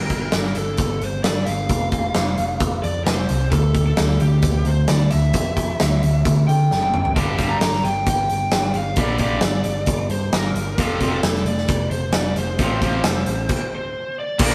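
This excerpt has the raw feel of a rehearsal room, with a light reverb hanging over the band. It is driving, menacing hard rock in G dorian at 132 BPM in a straight 4/4. A dark, overdriven lead guitar through a small cranked amp carries the melody from the start, over a round, amped picked bass and a big acoustic rock kit sitting up front with a punchy kick, a medium-tuned snare and glittering cymbals. After a drum fill, a double-tracked, bright distorted electric guitar joins with a picked riff at 7.2 seconds, as the chords move from Gsus2, F5 and Dsus2 to Gm and F. The band hits a stop at 13.5 seconds, and a biting, double-tracked overdriven guitar slips in very quietly at 14.4 seconds, just before the cut.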